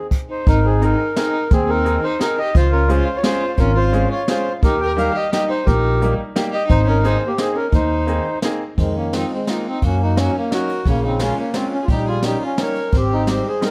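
A 3/4 waltz at 174 BPM drives this short musette excerpt, its whirling, nostalgic mood carried by a straight feel and a shift from Ab major to F minor at 8.8 s. The mellow accordion leads the melody with a reedy, round, up-front tone, while a rich violin adds a smooth, bowed second line with even vibrato. Underneath, a jazz kit played with brushes brings a small-room sound, dark cymbals, a high-tuned snare and a boomy kick, joined at 0.5 s by a pizzicato upright bass with a woody, acoustic presence. A bright, polished upright piano enters at 0.8 s with brilliant, short-sustained accompaniment, and the second half moves through richer seventh chords before settling on Abmaj7. Light reverb gives the whole a dark, warm production.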